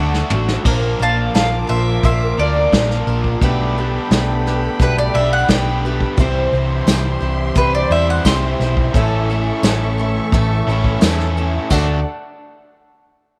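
A moderate spring reverb gives this cut from a longer folk rock and heartland rock piece a roomy, nostalgic glow, with a jangly mood at a straight 87 BPM in 4/4. A soft brush drum fill opens the kit, which sits distant in the studio room with dark cymbals, a medium-tuned snare and a punchy kick. Beneath it, a hollow-body short-scale electric bass sits up front, round and amped, while a bright, boxy swing-style acoustic guitar with fresh strings and a double-tracked, overdriven electric riff fill the middle. From 0.6 s a rich, bowed string section with soft attack and expressive vibrato holds sustained chords in the background, and from 1.0 s a picked bowl-back mandolin takes the melody, its double strings sitting up front. A mellow, very quiet grand piano joins at 6.2 s and a jingly tambourine at 6.9 s, as the harmony moves from D through Bb, Gadd9/B, C and A before returning to D.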